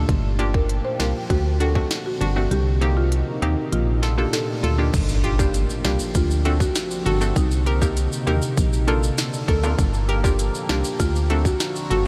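A straight 4/4 dancehall groove at 99 BPM in G minor sets a tough, sultry mood. It opens with a punchy, round FM bass up front, a hollow, bouncy square-wave pluck with filter sweep and chorus, and a deep, moody detuned pad pumping with sidechain. An electronic island pop drum kit of tight kick, sharp snare and smooth hats arrives a moment later, its kick dropping out from 2.5 to 4.9 seconds, and a buzzing, woody marimba melody through analog delay soon joins them. Bright, vintage tube shaker and timbales enter at 4.9 seconds alongside a very quiet electronic impact at 5.0 seconds, all over a Gm7, D7, Cm7, Bbmaj7 cycle in a dreamy mix soaked in huge ambient reverb.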